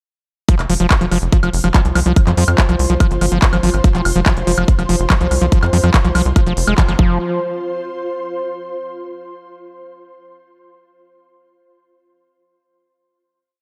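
A tight, tape-warm four-on-the-floor kick drives this short psychedelic trance piece at 143 BPM in a straight 4/4. Programmed techno drums add a clap backbeat, smooth closed and open hats and a high woodblock. From 0.5 seconds the track sits in a driving, alien drop: a punchy, nasal sequencer bass rolls in sixteenth notes down low, while a squelchy, gritty acid bass repeats a 3-step loop that drifts against the bar, its resonant filter sweeping through accented notes under distortion, digital delay and sidechain pumping. At 1.5 seconds an ethereal, airy pad of detuned unison voices enters with slowly shifting chords, softened by ensemble chorus and its own reverb and shaped by sidechain pumping. After a band accent, the pad carries the final note alone from 7.2 seconds. The production is dark, with light digital ambience.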